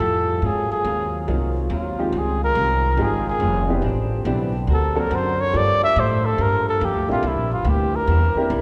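Heard in the reverberant sound of a church or concert hall, with a 2.1-second decay, this short jazz passage swings joyfully at 141 BPM in 4/4. A dark trumpet carries the melody as a solo up front, playing in a jazz style with light vibrato and scooped notes from the very start. Beside it, a growly, woody upright bass is plucked on steel strings and sits prominently in the mix. Further back, a trombone section holds soft-attacked sustained chords with its own gentle vibrato, while a vintage hollow-body electric guitar adds clean, picked, compressed accompaniment. An intimate upright piano, natural in tone with audible action noise, joins the background at 1.3 seconds. The harmony moves through Ab13, Dbmaj9#11, Am11, D7b13, Gm9 and C7 in this fragment cut from a longer piece.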